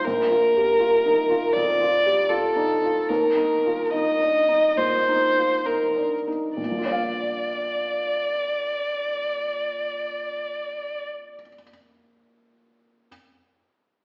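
Neoclassical piano and strings in a hopeful, intimate rubato 4/4, where a dark, veiled solo violin played con sordino carries the melody up front with vibrato and portamento over a soft, mellow felt-muted upright piano with audible action noise and short sustain, the pace slowing through the opening 6.6 seconds before the violin falls away at 11.0 seconds and the piano closes alone to 13.1 seconds, all set in a wet recital hall reverb with an AM radio sound, cut from a longer piece.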